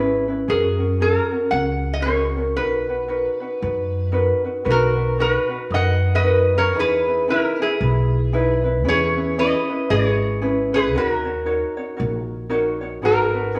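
A thumb-plucked ukulele and a woody, dark pizzicato upright bass open this languid, dreamy Hawaiian piece in B major, swinging gently at 115 BPM. At 0.5 seconds a lap resonator guitar takes the melody, its slide and fingerpicks giving a metallic, nasal edge, over chords moving from F#add9 and Bmaj7 through Emaj7 to G#m7. The trio sounds like a band playing live in one stone room with a wet reverb, all three parts close up front.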